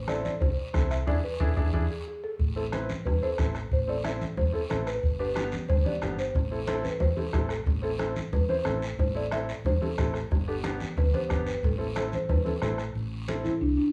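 A buzzing, woody marimba played with soft mallets carries the melody through this passionate, fiery cumbia excerpt at 182 BPM in A minor, over a dark, round hollow-body electric bass, a clear upright piano with audible action noise, a soft-beater bombo, bright low-tuned congas and a raspy guiro, with a band accent from 1.1 to 2.4 seconds and a light small-room reverb.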